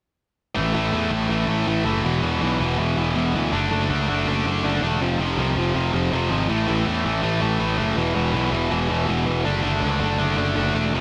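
A light reverb gives this short punk cut a touch of room around its distorted parts. At 162 BPM in a straight 4/4, the mood is rowdy and energetic from the first bar. A tight distorted guitar sits up front with the riff from 0.5 seconds. An overdriven semi-hollow guitar joins with its own riff a moment later, adding a hollow-body edge across the same E2 to D4 span. The bright, up-front fuzz bass, picked and growly with its own overdrive, drives the low end from E1 to E2. The chords cycle through A5, E5, D/F# and F5 before returning to A5, E5 and D/F#, running as one section until the cut ends at 11.0 seconds.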